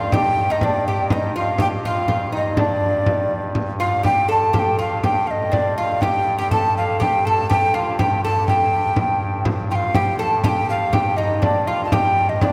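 A long cathedral reverb, decaying over 5.3 seconds, surrounds this medieval dance, played live by a band in one room and cut from a longer piece. The mood is ancient and driving, in a straight 3/4 at 122 BPM, tuned slightly high with A4 at 441 Hz. Up front, a breathy tenor recorder carries the melody between D5 and A5, its hollow, mellow wooden tone shaped by vibrato, a soft attack and a touch of chiff. Beneath it, a fretless oud plucked with a plectrum plays a second line from D4 to A4, its double strings giving a bright, woody ring. A chamber organ holds a low G2 drone on a soft reed oboe stop with tremulant, while a small, close frame drum struck with hard hands joins at 0.1 s and plays through to the end at 12.5 s.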